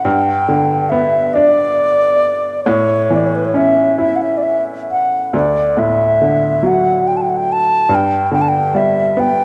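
The rhythm moves in 6/8, with uneven beats and a rubato feel that lets this Celtic slow air breathe freely. It is a tender, pastoral fragment cut from a longer piece. A baroque flute carries the melody up front throughout, with an airy, wooden tone, vibrato and expressive tongued phrasing, colored by cassette tape and a touch of tape echo. Beneath it, an upright piano accompanies across all 9.4 seconds, its brilliant, woody voice natural and short in sustain, also close and present with the same cassette character. The harmony passes through G, A, D and back to G. A lush hall reverb lasting 2.4 seconds surrounds the intimate home cassette recording.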